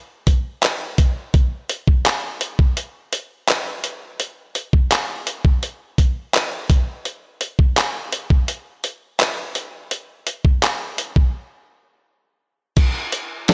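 Moody and sensual, this R&B excerpt moves at 84 BPM in a straight 4/4, carried entirely by a dusty, soul-inspired sampler-style drum kit that plays from 0.3 to 13.5 seconds. Up front and compressed, the kit sets a thumpy kick and a medium-tuned snare among hi-hat, handclaps and crash cymbal, all coated in vintage 12-bit grit. A light reverb lends a digital sense of space, and a break arrives at 11.3 seconds.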